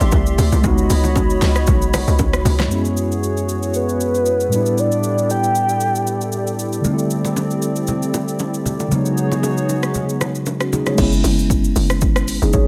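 A relaxed amapiano groove at 116 BPM in 4/4 opens with a mellow, clean tine electric piano up front, a hollow, flute-like soft pad with chorus and sidechain pumping, a bouncy, percussive log drum bass and a deep house drum kit with a punchy kick, fat snare and overdrive, joined by ringing bongos and congas in the background; the log drum bass drops out at 2.7 seconds, a round, dark octave-layered synth lead with chorus, phaser and tape echo carries the melody from 3.8 seconds, and the log drum bass returns at 11.0 seconds as the pad stops, all set in light digital reverb.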